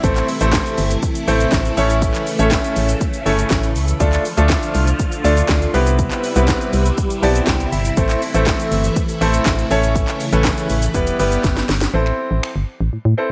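A straight 4/4 house groove of punchy kick, cracking snare, bright hats, handclaps, finger snaps and shaker, overdriven and up front, drives this energetic, bittersweet dance-pop excerpt, where a hollow, organ-like FM bass and a polished concert grand piano with deep lows pump with sidechain under swirling vintage string-machine chords soaked in phaser and ensemble chorus, all in a light reverb, with a piano fill at 7.0 seconds and a drum fill at 11.4 seconds.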